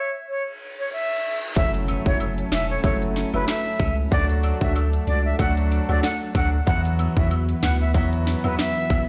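Dancehall at 94 BPM in F# minor with a hypnotic, bouncy swing, cut from a longer piece: an airy, reedy flute with vibrato and delay carries the melody from the start, joined by a reverse cymbal at 0.5 seconds. Then at 1.6 seconds an impact brings in the tight, overdriven electronic drum kit, a deep sine sub bass with a pitch-drop attack, brilliant short-sustain piano, twangy clean guitar arpeggios with delay, and a thick, warbling detuned pad with chorus and sidechain pumping, with band-limited cabasa and woodblock following from 1.9 seconds, moving through F#m7, D and Esus2 in a bare stone room.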